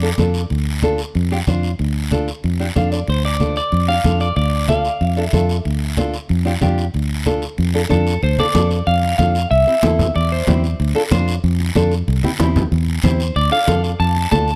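A dark, fingerpicked nylon-string guitar and a round, foam-muted fingered electric bass open this fiery cumbia fragment, and congas and a raspy guiro join at 0.2 seconds. The clean electric guitar carries the melody in twangy, picked phrases bathed in spring reverb, returning in bursts such as the one at 3.1 seconds. It sits up front beside the direct, amped bass. The congas are bright yet damped and low-tuned, compressed and saturated, tucked in the background, while the guiro stays close and dry. The small nylon guitar holds down the accompaniment and slips in a brief fill just before the melody re-enters. In the later section the harmony rocks between two chords, and light reverb with close, detailed miking gives this passionate music an intimate, present sound.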